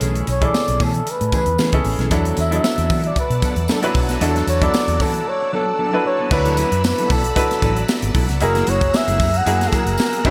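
A polished 1980s jazz-funk pop fragment with a bittersweet, slick mood, where a breathy flugelhorn with light vibrato carries the melody from 0.3 s over a bright grand piano with subtle chorus, a mellow, clean electric guitar riff in the background, a round, foam-muted fingered electric bass, a crisp fusion drum kit with punchy kick and gated reverb, a very quiet jingly tambourine, and a shimmering sawtooth string machine that enters at 2.1 s with sustained chords, all in a bright digital production with plate reverb and chords moving from Amaj7/B through E9sus4 and D69 to F#9.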